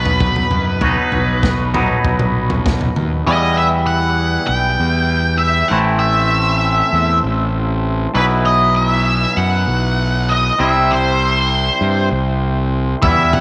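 Psychedelic rock at 98 BPM in B phrygian dominant, this trippy, dark excerpt from a longer piece sets an octave-fuzz lead guitar melody, up front and drenched in wah, distortion and tape echo, over a round, overdriven fuzz bass and a bright, twangy guitar riff run through phaser, while a mellow combo organ holds sustained chords with light vibrato in the background. A saturated breakbeat kit with tight kick, snare and toms drives the opening until 3.1 seconds, then drops out and returns only at 13.0 seconds, as the chords move from B through Em, Am and Bsus4 to C in a small, lightly reverberant room.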